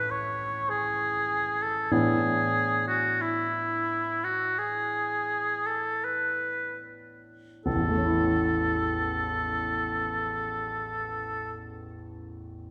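In a rubato 4/4 that slows through the first 7.7 seconds at 35-51 BPM, this serene romantic classical duo in A major, tuned to A4 = 441 Hz, sets a warm oboe with light vibrato singing the melody up front above a clear concert grand piano whose open accompaniment reaches into deep bass, the oboe falling silent at 11.5 seconds while the piano carries on to 12.7 seconds, the pair heard from further back in a wet recital hall in this fragment cut from a longer piece.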